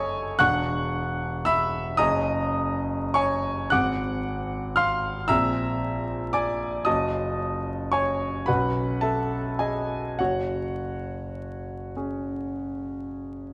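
This is a fragment of impressionist classical solo piano with a nocturnal, wistful mood, drifting in 6/8 at about 37 dotted-quarter beats per minute with loose rubato and uneven beats. A single concert grand carries the whole 13.5 seconds, ranging from a deep bass E1 up to a brilliant F#6. Its tone is bright and polished, placed up front with an intimate presence, long sustain and audible action noise from the instrument itself. The harmony drifts through colourful extended chords, moving from E9 at 0.4 seconds through F#add9, G#7, A#9 and F#m6 to B9, and settling on an open F#sus2 at 10.2 seconds. A moderate recital hall reverb of 1.6 seconds surrounds the playing, and a vinyl crackle lends the recording an old, nocturnal patina.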